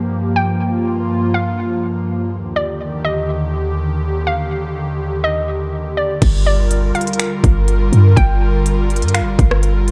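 Atmospheric cloud-rap hip hop in G minor at 123 BPM with a half-time feel, hazy and melancholic, opening on an airy, breathy pad holding Gm7 and Ebmaj7 chords with chorus and sidechain pumping, joined at 0.4 s by a hollow, bouncy square pluck melody in a high register, shaped by a low-pass filter and tape echo. At 6.2 s the chords return to Gm7 as a deep, boomy 808-style bass enters with a trap drum kit of hard-clipped kick, crisp hi-hats, finger snaps, rim clicks and crash cymbal. The echo-heavy digital ambience wraps this short cut from a longer piece in a hazy wash, with the bass and drums sitting up front.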